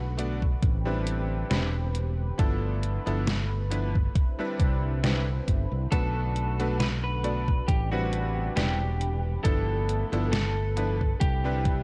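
Vaporwave with a nostalgic, hazy mood, moving at a slow, gently swung pace through a looping chord cycle from Bm7 to Am11, G13 and Cmaj9. A lush, airy pad built from detuned sawtooth and square waves with a noise layer sits in the background under chorus, holding sustained chords from the start. A round, fingered electric bass sits up front beside it, while a bright, clangy electric grand piano with subtle chorus and tape echo plays the accompaniment. The drums carry sampler-style grit: a thumpy electronic kick and a detuned 8-bit drum machine with a fat snare and hi-hat, both tape-coloured, re-recorded in a small room and placed up front. At 5.9 seconds a lightly driven, slightly broken-up lead guitar enters with a compressed, picked melody trailed by tape echo. Light reverb and digital ambience frame the whole cassette-tape sound of this fragment, cut from a longer piece.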